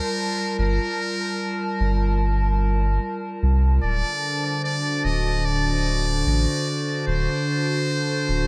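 Meditative and deep, this ambient dub passage drifts at 74 BPM in 4/4 with a gentle 16th-note swing, settling in G minor and moving from Gm9 to D7 at 3.8 seconds. A warbly, tape-like pad carries sustained chords from the start, its detuned square and triangle tones softened by chorus and its own reverb into a dark, nostalgic, lo-fi haze with slow attack and long release. A trumpet with a metal mute sings the melody between Bb4 and Eb5, close-miked and buzzy yet brilliant, played in a classical solo style and trailed by dub echo. At 0.6 seconds a round sine sub bass enters, sitting deep and up front with a fast attack and sustained notes. Light studio reverb gives the short cut, taken from a longer piece, a gently spacious feel.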